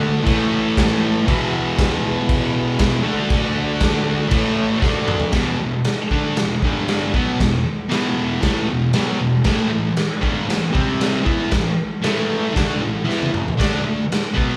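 Garage rock at 117 BPM, rowdy and raw, captured as a band playing live in one room with a moderate large studio reverb, cut from a longer piece. A thick, double-tracked fuzz guitar drives a bright, picked riff up front throughout. A mellow vintage combo organ with light vibrato holds clean sustained chords in the background, adds a fill from 0.3 to 1.3 seconds and stops at 5.3 seconds, while a gritty, saturated garage drum kit with a punchy kick, medium-tuned snare, crash and toms plays up front with a rolled-off top and drum fills at 4.8 and 13.1 seconds.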